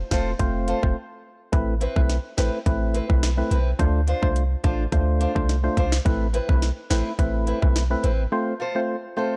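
A deep, boomy 808-style bass opens this short dancehall cut from a longer piece, joined almost at once by the drums, a hollow organ stab and a picked acoustic guitar. The mood is tough and sultry, set at 106 BPM in a straight 4/4 in A minor, with the harmony moving from F through Amadd9, Dm7 and Amadd9 again before returning to F. The electronic island pop drum kit sits up front with a tight kick, sharp snare and metallic hats, all roughened by overdrive. The organ-like stab is percussive and sine-tinged with a noise layer, treated with chorus and sidechain pumping, while the old ladder-braced acoustic guitar adds woody, boxy arpeggios on aged strings. A brief break falls between 1.0 and 1.5 seconds, and by 8.3 seconds the drums and bass have stopped, leaving the organ and guitar to carry the final break to 9.4 seconds. Light reverb and digital ambience frame a dark, warm production.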